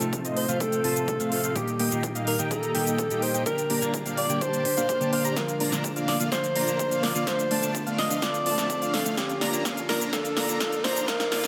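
A breathy, subtone alto saxophone with vintage sampler grit and dub echo carries an anthemic, triumphant melody from the opening of this festival progressive house build-up, over a twangy, clean picked electric guitar with phaser, a huge, detuned supersaw riff and a bold sawtooth unison lead playing arpeggios in the background, these three pumping to the sidechain and the synths under filter sweeps, along with a barely audible saturated sub bass, a punchy electronic kick set back in the mix, and an up-front big-room drum kit of crisp hi-hat, shaker and snare whose fill begins at 5.4 seconds, while a very quiet riser enters at 4.1 seconds, the whole set in a lush digital hall.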